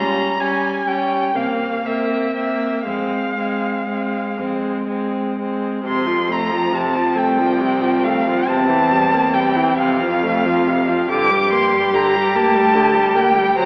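In a 6/8 at a slow, rubato 38-50 BPM, this solemn, melancholic excerpt of a romantic string quartet movement moves from F minor into F major at 5.9 s, with all four parts playing from start to finish. A focused, vibrato-rich first violin sings the melody high above a smooth, even second violin line, while an up-front viola fills in the accompaniment and a soft-attacked, expressive cello adds portamento to its bass. The quartet is heard from further back in a reverberant concert hall, colored by an AM-radio quality.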